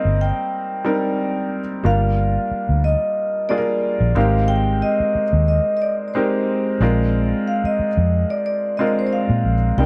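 Silky and bittersweet, this short cut from a longer piece of lush 1970s-style soul moves at 91 BPM in 4/4 with a gentle sixteenth-note swing, drifting through Cm9, Gm7, Abmaj9 and Bb9. A metallic, ringing vibraphone with medium mallets and its motor off carries the melody through a slapback echo, while an intimate concert grand piano, its action noise audible, supplies the accompaniment. A round, foam-muted fingered electric bass sits up front beneath them from 0.1 seconds, all framed by light small-room reverb in a dark, warm production.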